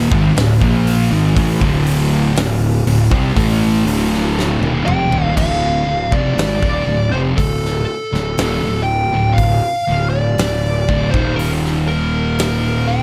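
Light reverb and a small room ambience frame this brooding, heavy stoner and doom metal cut, where two dark, distorted fuzz guitars grind out the riff in the background over a growly, overdriven fingered bass that sits up front. A big acoustic rock kit with a punchy kick, fat snare and bright cymbals drives the straight pulse, while a very quiet double-tracked fuzz guitar also plays the riff until 5.4 seconds. A drum fill leads into the second section, and a distorted fuzz lead guitar with delay carries the melody up front from 4.9 seconds, with the harmony moving from D minor to an Eb power chord near the close.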